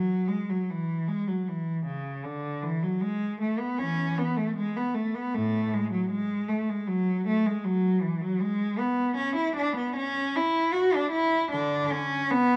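The pulse is a flexible, rubato 4/4 at about 77 BPM, giving this classical, baroque-style suite movement an unhurried, breathing feel. A single bowed cello plays solo for the whole 12.6 seconds of this passage cut from a longer piece, moving between A2 and F#4 in A major. Its rich tone carries expressive vibrato and portamento slides, and the player sits up front yet with a slightly distant quality. A recital hall reverb with a 1.7-second decay surrounds the instrument and lets each note bloom into the space. The dark, warm production suits the serene, radiant mood.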